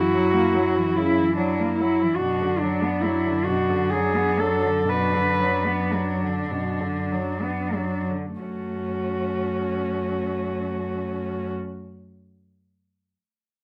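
A veiled, up-front muted cello carries the lyrical melody with light vibrato in this solemn, elegiac classical fragment for cello ensemble in F# minor, moving in a rubato 12/8 at 29-50 BPM and slowing down through its first 8.4 seconds. A second muted cello adds a soft-attack inner line, a distant third lends dark accompaniment with portamento, and a close fourth plays a low F# bass, all bowed and gently wrapped in light reverb until the parts stop at 11.5 seconds.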